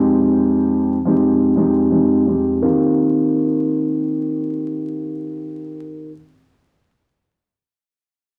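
Nostalgic and confident, this short hip hop fragment, cut from a longer piece, moves at 85 BPM in 4/4 with a light sixteenth-note swing in Eb major. A dark, mellow grand piano sits up front as accompaniment from 0.0 to 6.1 seconds. Its long sustain is colored by cassette tape and high- and low-pass filtering, with a filter sweep over the opening 2.6 seconds as the harmony moves from Fm7 to Eb69. The vintage home-cassette sound carries a snug booth ambience and a bed of vinyl crackle.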